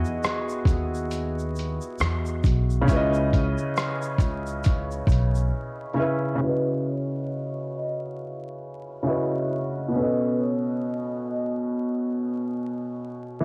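A gritty, sampler-style drum kit with a thumpy kick, hi-hat and rim click drives this reflective, hazy lo-fi hip hop fragment, alongside a woody, growly pizzicato upright bass up front, a grainy egg shaker in the background, and a felt-muted upright piano whose soft chords carry cassette-tape softening and audible action noise. After the drums drop out at 5.3 seconds and the bass and shaker at 5.5 seconds, a brief break gives way at 6.4 seconds to a vibraphone melody played with soft mallets, its airy ring and slow motor vibrato sitting behind the piano, which continues until 13.4 seconds. Small-room ambience, light reverb and vinyl crackle give the whole piece a homemade feel.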